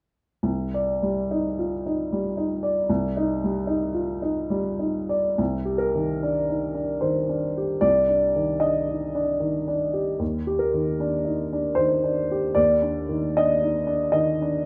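A moderate large-studio reverb surrounds a woody, up-front upright piano playing solo from 0.4 to 14.7 seconds in this intimate, melancholic fragment of neoclassical minimalist music, cut from a longer piece, drifting with rubato in 3/4 across a range from C2 to Eb5, opening on a Cmadd9 chord before moving to Ebmaj7 at 10.2 seconds.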